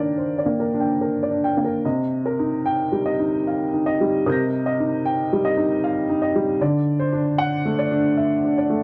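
Wistful and melancholic, this short neoclassical minimalist piece moves in an unhurried 3/4 at roughly 72-78 BPM, with a rubato feel that lets the time breathe. A solo upright piano carries everything, its woody, natural tone sitting up front and spanning from C3 to Bb6. The harmony, in C minor, opens on an Ebmaj7, settles into Cm7 at 1.8 seconds, and shifts to D7 at 6.6 seconds, giving the passage a gently unresolved lean. A brief opening phrase gives way to a longer second section from 1.8 seconds. A moderate booth ambience with a short decay keeps the sound intimate and dry, and the recording is cut from a longer piece.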